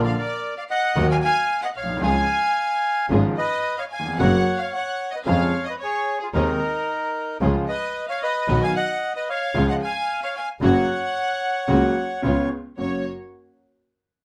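Tango at 112 BPM in 4/4 with a rubato feel, this elegant, passionate excerpt sits in F# major and is cut from a longer piece. A reedy, bright bandoneon carries the melody up front, while a bowed violin section with light vibrato and an earthy edge adds a second line. A baby grand piano with open tone and long sustain supplies the accompaniment, also up front, and a single bowed double bass, biting and nasal with an airy bow, anchors the bass close to the listener. Behind them, a dark string section played sul tasto with soft attacks provides intimate stabs in the background. The harmony moves from A# and D#m through C#, F# and B before a C#7 resolves to F# at 12.8 seconds, where a brief new section begins in a moderate studio room.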